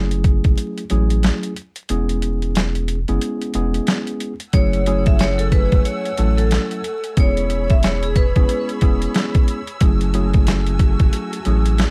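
Dark and moody, this swung 91 BPM boom-bap hip-hop excerpt in F# minor rests on gritty, pitched-down sampler-style drums with a thumpy kick and medium-tuned snare, a deep, round dub sub bass and a worn, slightly out-of-tune tine electric piano, with a metallic, ringing vibraphone melody carrying delay and slow motor vibrato from 4.5 to 8.7 seconds while lush bowed strings sit quietly in the background from 4.5 seconds, all in a dry, close sound under a layer of vinyl crackle.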